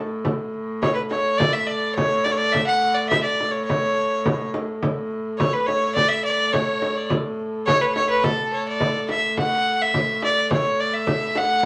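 A clear, nasal fiddle carries the melody up front in this festive, rustic medieval dance, its bowed line between A4 and F#5 touched with light vibrato and an earthy edge. Beneath it, a rich, reedy hurdy-gurdy holds a low A2 drone from the very start, its wheel-bowed tone carrying an airy quality. A small, bright frame drum joins at 0.2 seconds, sounding up front as if in a small room, setting a straight 2/4 pulse at 105 BPM in A major. At 5.4 seconds a second fiddle slips in behind the lead with a smooth, even line from A4 to E5, staying in the background until 9.1 seconds. The piece moves into a new section at 9.4 seconds, and a wet studio reverb gives the ensemble a sense of space in this excerpt cut from a longer piece.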